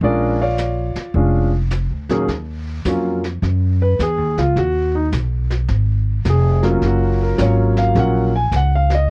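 Moody and cool, this short cut from a longer jazz piano trio swings at 106 BPM in Eb minor, opening on a Bb7#9 before settling into Ebm and Abm7 harmony. A warm, deep-voiced concert grand carries the melody up front and takes a solo from 2.3 s to the close at 9.1 s, over pizzicato upright bass with a woody, dark tone and a brushed kit with a boomy kick heard low in a small room. The dry recording sounds like worn old cassette tape, its pitch warbling and drifting throughout.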